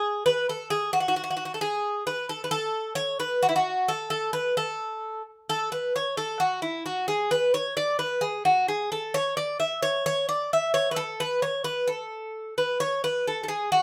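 In a straight 2/4 at 131 BPM, this joyful, uplifting Greek folk fragment in A major, cut from a longer piece, features a solo acoustic Greek bouzouki, picked and placed up front, whose bright, metallic double strings with some octave-doubled courses ring between E4 and E5 through a moderate studio reverb, moving into a new passage at 5.5 seconds and a brief further section from 12.8 seconds.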